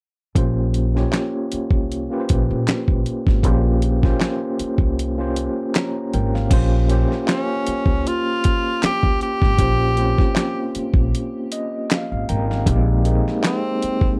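Late-night and sultry, this neo-soul R&B excerpt pairs a barky, overdriven tine electric piano with fast tremolo and a growly, woody pizzicato upright bass over a dusty, compressed sampler-style kit of thumpy kick, snare, hi-hat, handclaps and crash, all captured close and dry with a lightly swung feel. A clear tenor saxophone enters with a solo melody at 7.3 seconds, and the electric piano adds a fill from 11.1 seconds before the harmony shifts at 12.7 seconds.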